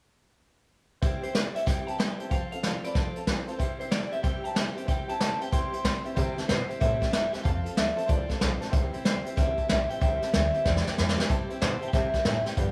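A swung 187 BPM rockabilly groove in C major rides on a vintage brush drum kit with a punchy kick and medium-tuned snare, giving this retro, rowdy cut from a longer piece its drive, with a drum fill at 10.7 seconds. A twangy, slightly broken-up electric guitar carries the melody with plate reverb and analog delay, over a full-bodied picked steel-string acoustic guitar with audible finger squeak and a dark, mellow upright piano with short sustain and action noise sitting in the background. A woody pizzicato upright bass joins at 6.2 seconds as the harmony moves between C and F, all set in a small, moderately reverberant room.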